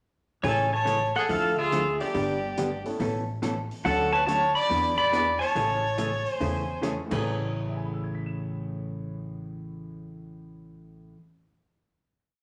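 A bright, twangy pedal steel guitar leads this short, cheerful western swing piece, played with fingerpicks and slide, using volume swells to shape a motif-based melody in period phrases. A clear, biting fiddle with light vibrato bows a harmony line mostly in sixths beneath it, both parts carrying the tune until about 6.8 seconds. At 141 BPM in A major, a dark, hollow-body jazz guitar sits up front with four-to-the-bar rhythm, while the upright bass thumps out a woody two-beat root-and-fifth pattern on gut strings. A distant, roomy big-band drum kit keeps time on the hi-hat with sticks and a punchy kick, and a clear upright piano with short sustain adds syncopated comping in close voicings from the background. The band rings out on a final chord from 7.3 seconds, with the piano sounding longest, all set in a wet, large studio reverb.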